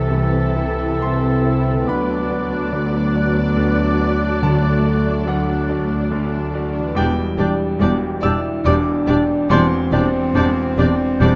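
This hopeful, tender orchestral film cue opens at once with nearly the full ensemble: a veiled, con sordino violin section carries the melody over a clear concert grand piano, soft-attacked violas and a tight, mellow French horn section holding sustained chords. The pace is a slow, rubato 71 BPM in 3/4, with harmony moving from Am/C through Bm/D to D and settling on Cadd9/E at 7.0 s. Beneath, dark, bowed cellos and double basses anchor the bass, while the piano's deep low end adds weight. Countermelodies come from a distant, roomy oboe with light vibrato, a very quiet classical-style clarinet, a pure, straight-toned flute ensemble high in the background and a second, faraway violin section, with a ringing, fingerpicked harp barely audible among them. Calf-headed timpani struck with medium mallets sound briefly from 4.4 s, the closest and most present voice in this lush, lightly reverberant fragment of a longer piece.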